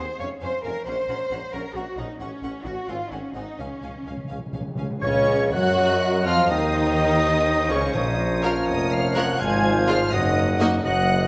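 Classical orchestral music, dramatic and stormy, in a fast romantic movement in 6/8 with rubato around 77-91 BPM, where a lush violin melody rides over a second violin line, focused violas, woody cellos, bright double basses and a distant tuba, with round soft-mallet timpani at 3.6 seconds before flutes, clear oboe, a roomy bassoon, mellow horns, dark trumpet stabs and a barely audible trombone section enter at 5.0 seconds, joined by clarinet at 5.8 seconds, all in a reverberant scoring-stage space.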